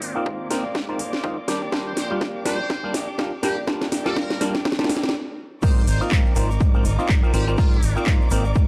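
A joyful, feel-good filtered disco house excerpt at 123 BPM opens on a filtered build-up: a buzzy muted trumpet section carries the melody over biting bowed strings, a twangy clean electric guitar riff, a bright fingered bass, and an overdriven house kit with a cracking snare, metallic hats and handclaps, all pumping to the sidechain. A stringy auto-wah clav through a phaser and a punchy electronic kick join almost at once, a drum fill rolls through the sweep, and a brief stop follows at 5.1 seconds. The drop lands at 5.6 seconds, where a very quiet egg shaker enters, and the dry, gritty mix moves from Ab6/9 to Ebmaj7 and back.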